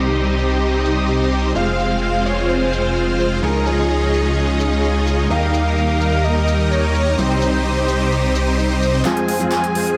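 Emotional and euphoric, this festival progressive house fragment pairs a huge, detuned supersaw riff and a thick, saturated saw bass up front with an airy, dreamy sine lead carrying the melody through chorus and diffuse delay. Behind them sit a mellow felt-muted upright piano, a distant, smooth symphonic string section holding sustained chords, and a layered big-room electronic drum kit with crisp hats, handclaps and shaker. The whole mix is soaked in plate reverb, and the bass drops out at 9.0 s, just before a drum fill arrives at 9.1 s.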